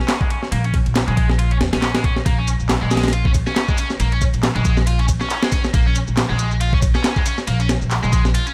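A swung sixteenth-note groove at 138 BPM drives this swaggering, energetic breakbeat in Bb minor: a gritty, compressed sampler-style kit with thumpy kick, high-tuned snare and ride sits up front beside a woody, dark pizzicato upright bass entering at 0.5 s, while electronic analog handclaps and shaker, re-recorded in a large room, join in, and a bright, double-tracked high-gain guitar riff, picked with distortion, low-pass filtering and tape echo, rides a Bbm7 chord in a dry mix before a break at 8.3 s.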